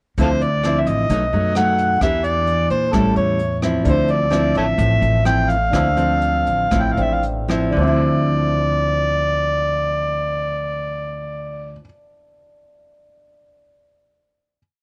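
A smooth, wistful bossa nova in D minor, this short complete piece moves at 111-131 BPM in a straight 4/4 and slows down from 3.9 to 7.8 seconds before settling on a final chord. An amplified, overdriven harmonica carries the motif-based jazz melody up front, its gritty tone marked by tongue slaps and scooped notes. Beneath it, a fingerpicked nylon-string guitar plays classical-style bossa accompaniment with thumb bass and syncopated plucked chords, while a pizzicato upright bass with steel strings adds a woody, dotted root-and-fifth line. A jazz brush drum kit in a small room keeps a soft bossa groove with hi-hat, rim click and a boomy kick until 7.6 seconds. From 3.8 seconds a dark, mellow baby grand piano sits in the background with held drop2 chords and audible action noise, ringing on to 14.6 seconds, and the whole recording carries light reverb and the worn, warbling pitch drift of old cassette tape.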